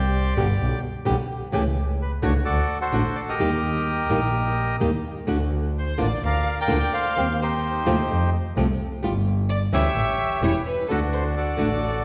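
Dramatic and sultry, this tango excerpt in G minor moves at 128 BPM with a rubato feel. A reedy, close-miked bandoneon carries the melody up front, over a biting, earthy bowed double bass with light vibrato and a fingerpicked flamenco guitar. A single bowed violin, warm and expressive with vibrato and portamento, enters at 5.8 seconds as a second line, and the whole is set in a spacious scoring-stage reverb heard from further back in the room.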